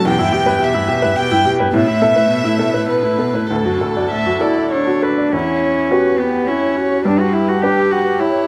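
Reflective and longing, this short neoclassical excerpt for piano and strings moves in a rubato 3/4 at roughly 97-108 BPM in E dorian. A chamber violin section carries the melody throughout the full 8.5 seconds, its bowed sul tasto tone soft in attack with light vibrato and sitting up front. Beneath it a single cello sings a pure, floating second line with a smooth top, while one viola adds airy-bowed accompaniment in its own intimate sul tasto voice. A bright upright piano, woody and slightly detuned with audible action noise, supplies the accompaniment from up front, present and intimate. The harmony passes from Em through Asus2 and D, then opens into Emadd9 at 5.3 seconds before settling on G, all wrapped in a light reverb that keeps the small ensemble sounding close and chamber-like.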